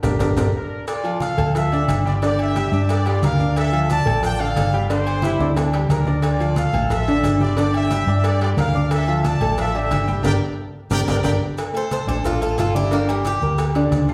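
A dark, round hollow-body electric bass sits up front in this driving, fiery salsa excerpt, under a clear, slightly detuned upright piano with woody action noise, ringing timbales and agogo bells, low-tuned congas, a vintage cowbell and grainy maracas, while a tight, bright trumpet section with light vibrato carries the melody from 0.6 seconds, a matching trombone section adding only a brief second line around 5.2 seconds, before a metallic, double-strung Cuban tres takes a solo at 11.8 seconds, all set back in a large, wet studio reverb.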